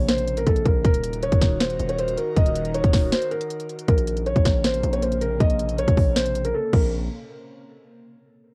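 A felt-muted upright piano, dark and intimate with audible action noise, carries the melody over an airy, detuned pad treated with chorus and phaser and a distorted, saturated 808-style bass from the start, joined at 0.1 seconds by an up-front trap drum kit with a hard-clipped kick, sharp snare and crisp hats, in a melancholic yet hard-hitting half-time trap piece at 158 BPM in Bb minor, cut from a longer track, with a break at 3.1 seconds and a brief silent gap at 6.5 seconds, captured as a home cassette recording with light reverb.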